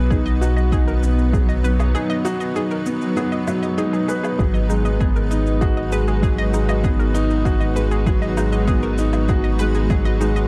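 Piano and strings electronica with a hypnotic, moving mood, built on a soft felt-muted upright piano riff with audible action noise and tape echo, sitting up front over a deep, round analog bass that pumps with sidechain. A blurred, evolving granular cloud pad holds sustained chords in its own reverb, while a bright, detuned analog pluck spins chorused, tape-echoed arpeggios, and an overdriven, punchy electronic kick and faint overdriven shaker and woodblock drive the groove. A break runs from 1.9 to 4.4 seconds, with a barely audible swell just before the harmony moves from B to G#m7, all wrapped in a dark, warm digital ambience.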